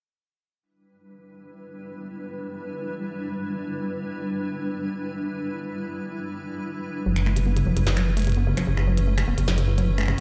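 Heard as if through a big sound system in a bare room, this eerie, melancholic IDM fragment at 149 BPM in E dorian opens with a blurred, cloudy granular pad holding Em7 from 1.5 seconds, its grainy 12-bit sampler grit softened by built-in reverb. At 7.1 seconds the harmony shifts to B9sus4 as a detuned, rumbling sawtooth bass enters up front with tube saturation, joined by a rubbery, resonant square-wave acid arpeggio coloured by cassette tape and dub echo. A glitchy electronic kit of finger snaps, clicky hats and a tiny snare, re-recorded in a small room, sits low beneath them.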